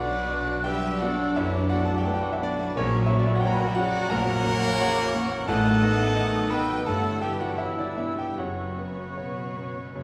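This brief excerpt from a romantic movement for piano and orchestra opens at once with the full ensemble in B minor, brooding and passionate, moving at a rubato 75-90 BPM in 4/4. An up-front concert grand carries the melody, its clear tone ranging from deep bass up to B5, while a distant, very quiet violin section also carries the melody with woody vibrato. A second, closer violin section and an airy, crisp-attacked flute section trace a second line, as a lush viola section fills in the accompaniment from the background. Dark French horns and bright, close-miked trombones hold sustained chords, a roomy solo trumpet adds bright stabs, and cellos with expressive portamento join soft-attacked double basses on the bass line. The harmony moves from Bm through F#/A#, B7/A and Em/G before settling on F#sus4 near 8.4 seconds, all bathed in the wet reverb of a recital hall.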